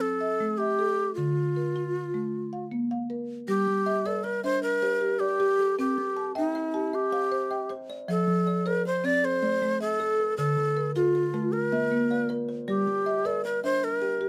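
A breathy, bright wooden flute sits up front and carries the expressive melody with a crisp, chiffy attack and vibrato in this hypnotic southern African traditional piece at 104 BPM in a straight 12/8, set in G equiheptatonic tuning. A woody marimba played with medium mallets spins arpeggios beneath it from the start, and at 3.7 seconds a dark, ringing kalimba joins with smooth, thumb-plucked arpeggios from its hollow box. Close, detailed microphones and little reverb keep the sound intimate as the chords cycle through Dm, Gm, C, F and Am in this excerpt from a longer piece.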